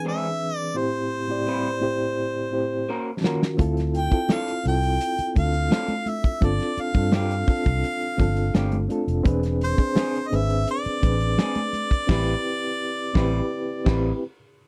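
A clear, soft-attacked harmonica carries the melody with scooped, jazz-style notes over a reedy electric piano shimmering with fast tremolo and a slightly broken-up, lo-fi electric guitar riff in this smooth, cinematic slice of lush 1970s-style soul, cut from a longer piece. A damped drum kit with dark cymbals and a fat snare comes in at 3.2 seconds in the midst of a fill, joined at 3.6 seconds by a round, foam-muted fingered bass and high-tuned congas sitting in the background, moving through chords such as Dm7, G7sus4 and E7b13. The dry, close studio sound keeps things intimate up to a band accent at 12.1 seconds, resolving on Am9 as the electric piano adds a closing fill.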